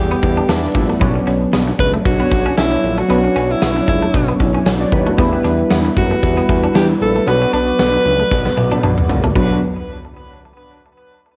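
1980s-style pop with a dramatic, moody feel, moving in a lightly swung 4/4 over a chord progression of Em7, Bmadd9 and Bm. A bright alto saxophone carries the melody up front, close-miked and played with vibrato and scooped notes, its tone coloured by cassette tape, tape echo and plate reverb. Glassy digital keys with a detuned, chorused shimmer fill out the accompaniment, while mellow synth brass, round and dark, adds sustained stabs from the background. A fat, detuned sawtooth analog bass anchors the low end, and a twangy electric guitar at the edge of break-up picks a riff from 0.1 seconds, dressed in analog chorus and tape echo. The huge arena drum kit, with punchy kick, medium-tuned snare, hi-hat, tambourine, crash and toms, sits up front in a big natural room and rolls into a fill at 8.3 seconds, all captured as a home cassette recording with moderate studio ambience, cut from a longer piece.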